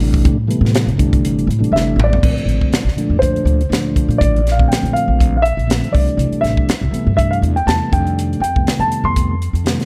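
A 121 BPM groove in 4/4 with a light 16th-note swing drives this funky, slick electric jazz fusion excerpt, carried by a crisp, airy drum kit with a high-tuned snare and punchy kick up front, a woody, thumpy pizzicato upright bass on gut strings, and a soft, flute-like tonewheel organ with key click through a slow rotary speaker, all sounding from the start over Am9. As a drum fill begins at 1.7 seconds, a dark, mellow grand piano with short sustain takes the melody, sitting up front as the harmony moves through Bbmaj9, C69 and F13. The production is dark and warm, with light reverb and a small room ambience.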